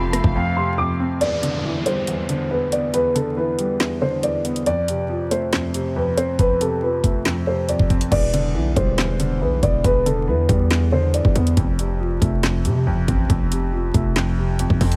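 Overdriven drill drums with a knocking kick, woody snare and bright hats sit up front in this tense, dark half-time hip hop excerpt at 139 BPM in E phrygian, joined by a dark upright piano melody with tape echo and a worn grand piano accompaniment, both carrying audible action noise. Quiet bowed chamber strings and a distant, airy jazz flute with tape echo appear only in the opening second, the drums drop out from 0.3 to 1.2 seconds, and an electronic downlifter follows before the punchy, heavy 808 bass returns at 8.1 seconds. Vinyl crackle and a small room ambience frame the alternating F and Em7 chords.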